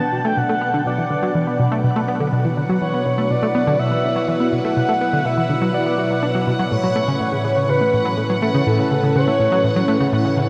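A tight, driving sequenced synth riff of detuned sawtooth and square waves with a fast filter pluck sits up front in this cosmic, mysterious stretch of ambient, sequencer-driven space music, cut from a longer piece at 123 BPM in B minor. A swirling, full-bodied phased analog pad holds sustained chords beneath a soft, breathy flute-like lead melody, while a bubbling, resonant stepped-filter texture hovers on a single high F#5 further back. The whole is steeped in a huge, wet ambient reverb with a 7.6-second tail, shimmer reverb on every part, and the harmony moving from Bm to A6 at 6.7 seconds.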